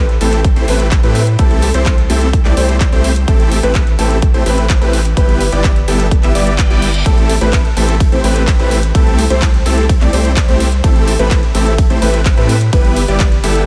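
Festival progressive house in A minor at 127 BPM, this emotional, euphoric excerpt from a longer piece is led by a huge, bright, detuned supersaw riff with a cassette-tape tint and diffuse ambient delay, while a dark, boxy concert grand piano plays arpeggios in the background through ensemble chorus. A deep, thick, saturated sub bass and the piano and lead all pump with sidechain against a punchy, overdriven kick sitting up front, joined by a layered dance kit of handclaps, metallic hi-hats and ride cymbal that was re-recorded in a small room. The chords cycle through Am7, C6 and Em/G under light digital ambience, and a reverse cymbal sweeps faintly between 6.5 and 7.1 seconds.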